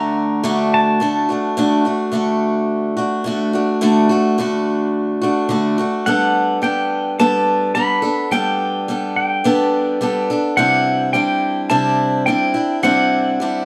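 Folk in G major at 107 BPM with a hopeful, pastoral mood, where a bright, up-front parlour steel-string acoustic guitar with fresh strings picks the accompaniment throughout, while a clean, compressed electric pedal steel guitar, played with fingerpicks, slide and volume swells, sings a high melody for the first 1.6 seconds and returns at 6.1 seconds, over chords moving from D to Gadd9 and Cadd9 in a moderate studio reverb, cut from a longer piece.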